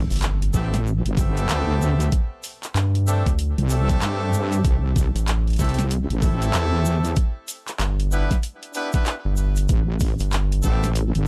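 A dark, dry production with audible lossy compression artefacts carries this swaggering, playful glitch hop fragment in A minor at 95 BPM, swung on the 16ths and moving through Am9, D7sus4, C6 and Em7. Up front, a heavy, detuned wobble bass with chorus runs from 0.0 to 11.3 seconds, joined by a rubbery, hollow square-wave bass with a plucky filter, while an overdriven, knocking electronic kick anchors the groove alongside an overdriven dubstep kit of deep snare, handclaps and bright hats. Brilliant horn stabs with vibrato and octave doubling pump through sidechain and delay, a grainy tube shaker sits close in the background, and a very quiet electronic impact marks the opening 2.1 seconds.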